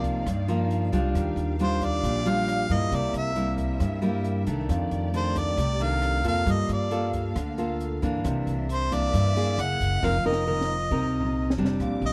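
A dry, close recording in a small room with a 1970s studio character frames this sunny, relaxed bossa nova excerpt, moving at 135 BPM in a straight 4/4. Up front, a clear jazz-style harmonica carries the solo melody with light vibrato, sitting between C5 and F#5, while a bright, fingerpicked nylon-string guitar with fresh strings and audible finger squeak supplies the classical-leaning accompaniment. An upright bass plucked on steel strings gives a woody, thumpy low end, and in the background a soft-attacked string section bowed sul tasto holds intimate sustained chords with vibrato. The open jazz kit stays dark and smooth behind them, pairing a high-tuned snare and boomy kick with hi-hat, rim clicks and toms, then breaks into a fill from 10.0 to 11.8 seconds. The harmony drifts through rich extended chords such as Cm11, Ebmaj9, F13 and Gm9 before settling on F7sus4 as the clip cuts off at 12.1 seconds.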